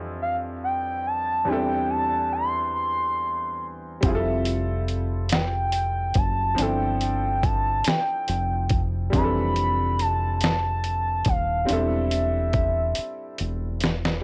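A yearning, late-night slow R&B cut in six-eight, built on a clear concert grand piano that lays down lush extended chords with deep bass and short sustain, while a smooth, detuned sine lead glides above with vibrato and portamento, its tone colored by chorus, cassette tape and tape echo. At 4.0 seconds a round, dark fingered electric bass with tube saturation and a dusty sampler-style drum kit enter up front, the drums gritty and overdriven with a thumpy kick and medium-tuned snare. A drum fill closes the passage at 13.0 seconds, all heard through light reverb and the hazy character of a home cassette recording.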